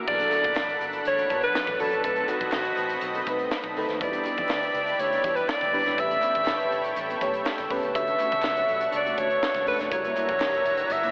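This polished 1980s jazz-funk pop fragment, cut from a longer piece, opens on an FM electric piano with a soft pad layer and a thick, detuned unison pad holding sustained chords, both shimmering with chorus, while a mellow, dark electric guitar plays a riff in the background through a lush chorus. At 0.1 seconds a bright alto saxophone takes the melody up front with pop-style vibrato, joined by a crisp fusion drum kit with a punchy kick, a high-tuned snare, hi-hat and crash in a pumping, gritty small room, and a vintage foam-muted fingered bass sitting round and low in the background. Group handclaps, hollow and close, are barely audible from 0.3 to 10.5 seconds. The harmony moves through Bm7, B7b9, Em7, A9, Dmaj7 and F#7b9, giving a nocturnal, urban mood. The whole mix is dreamy and soaked in a huge ambient reverb with a telephone-like sound.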